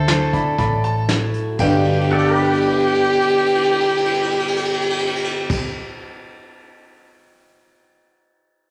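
Nostalgic and sunny, this brief honky-tonk and classic country excerpt features a dark, woody fiddle with light vibrato and portamento carrying the melody up front, a brilliant upright piano with audible action noise adding a second line, a picked steel-string acoustic guitar with finger squeak, clean pedal steel guitar with fingerpicks and volume swells holding sustained chords in the background, a round, punchy foam-muted electric bass, and a soft brush drum kit that plays a fill from 1.8 s, all set in a large studio reverb.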